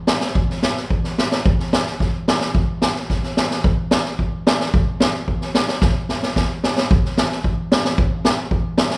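A street-band drum kit carries this short klezmer excerpt on its own, its boomy kick and high-tuned snare sitting up front with a mid-forward, rolled-off character. The groove is in 2/4 with a straight feel, starting around 110 BPM and speeding up across the nine seconds. The mood is festive yet soulful, with the acoustic kit entering at 0.1 seconds and driving the music forward. A drum fill arrives at 5.8 seconds, leading into a new section at 6.9 seconds that runs to the close. The kit has an intimate, small-room tone, while the overall space opens into a moderate hall reverb with a 1.3-second tail, giving the recording the resonance of a church or concert hall.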